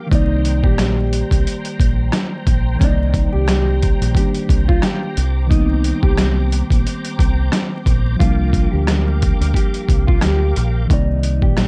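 Vinyl crackle and a heavy wash of echo hang over this dark, tough boom-bap hip-hop excerpt, which swings lightly in 4/4. Gritty, pitched-down sampler drums with a thumpy kick, rim click and overdriven snare sit up front beside a round, deep fingered bass, while a worn, slightly out-of-tune tine electric piano, colored by cassette tape and tape echo, supplies accompaniment over Cm7, Cm9 and Gm7/C. A clean, fingered electric guitar carries the melody, and a reedy tonewheel organ with key click and slow rotary speaker holds bright sustained chords until 10.9 seconds.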